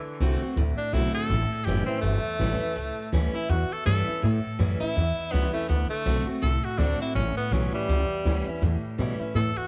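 An edgy tenor saxophone with light vibrato and tape echo leads this rollicking, upbeat rockabilly cut at 164 BPM with a swung feel in A mixolydian, stepping into a solo at 4.2 seconds over a bright, full-bodied picked steel-string acoustic guitar and a woody, thumpy pizzicato upright bass, all up front in a small room as the chords move between D7 and A7.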